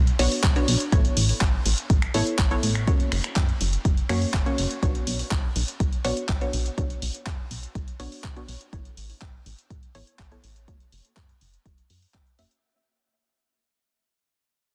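A deep, up-front electronic kick drives this bittersweet, expansive progressive house passage, carrying a tape-warm, layered character from a small-room re-recording. Beneath it, a deep house kit of finger snaps, handclaps and hi-hat pumps under sidechain compression on its hats, cymbals and percussion, with soft clipping on the snare. A plucky analog bass blends sawtooth, square and triangle tones with ring modulation into a punchy, funky, mellow voice, pumping under sidechain compression while a filter sweep works over it. Above, a lush, detuned unison pluck with a noise layer and a moving notch fires short stabs through sidechain pumping and delay, tracing Bmadd9, Aadd9 and F# chords. A barely audible downlifter brushes past in the opening second, and the whole cut, lifted from a longer piece, fades out over its 12.6 seconds under light reverb and a dense, heavily limited modern master.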